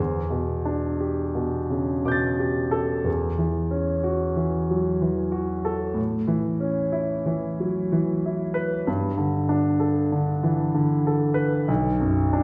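A clear concert grand piano plays alone for the full 12.4 seconds, carrying a hazy, mysterious piece of impressionist classical music cut from a longer work. The piano sounds natural and up front, with a deep bass, and its range reaches from B1 to A6. The playing is in 3/4 with uneven beats and a free, rubato feel, so the pulse seems to float. The harmony drifts through Em7, F#7(no3)/E, A and Gadd9 before settling on Bm near 11.7 seconds. A wet recital hall reverb with a 1.4-second decay surrounds the instrument, the room is heard from further back, and the top end falls away entirely above 10.6 kHz, adding to the misty atmosphere.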